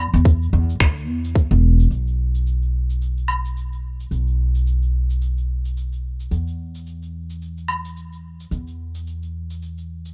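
A dry, rough home-demo sound frames this mystical, warm organic downtempo fragment in 4/4 with a swung sixteenth-note feel. An up-front pizzicato upright bass on gut strings carries the low end from the start, woody, dark and thumpy, with a sidechain pumping effect. Beneath it sit tape-warm, small-room electronic cabasa, finger snaps and woodblock, while a tight, up-front electronic kick drum appears only from 0.3 to 1.5 seconds.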